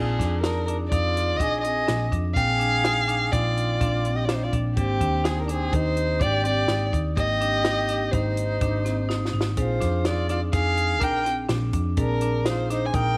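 A dark, woody violin leads with vibrato over a round, hollow-body picked electric bass in this brooding, intricate progressive instrumental excerpt in 5/4 at 125 BPM, alongside a distant, mellow flugelhorn second line and a bell-like tine electric piano in the background. Marimba arpeggios and a dry compact cocktail drum kit with a high-tuned snare enter at 0.2 seconds, the drums playing a fill at 9.1 seconds, all moving through Bb7 and Abmaj7 in a small room.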